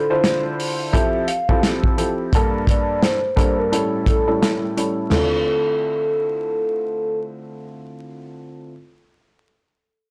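Tough yet reflective, this short boom-bap hip-hop excerpt moves at 86 BPM in 4/4 with a 60% swing on the sixteenths, set in D minor and tuned slightly low to A4 = 439 Hz. A worn, woody upright piano carries the accompaniment from the start to 8.7 seconds, its slightly detuned tone sitting up front with long sustain as the harmony passes through Dm7, Fmaj7, Gmadd9 and A7 before returning to Dm7. Above it, a soft-mallet vibraphone plays a mellow, ringing melody with slow motor vibrato and digital delay, stopping at 7.2 seconds. A soul drum kit with a punchy kick, medium-tuned snare, hi-hat, toms, crash and dark cymbals plays from 0.2 to 5.3 seconds, recorded in a small room with a rolled-off top. A filter sweep runs through the opening section, and the whole recording has a blown-out, overdriven character with vinyl crackle and light reverb.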